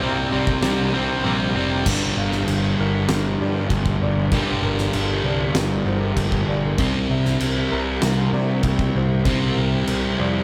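A sludgy, up-front distorted guitar riff dominates this melancholic, cathartic post-rock passage, anchored by a fuzzed, overdriven picked bass and an oversized low-tuned drum kit with a boomy kick, fat snare and dark cymbals in a big, pumping room, which enters at 0.5 s. During the opening build-up, a biting overdriven guitar riff and a very quiet, twangy clean guitar arpeggio play until 1.9 s, as the harmony moves from Cm7 to Gm7 and later to C7. Beneath them, a soft felt-muted upright piano arpeggiates through analog delay in the background, while a veiled, con sordino string section holds very quiet sustained chords, all set in studio reverb.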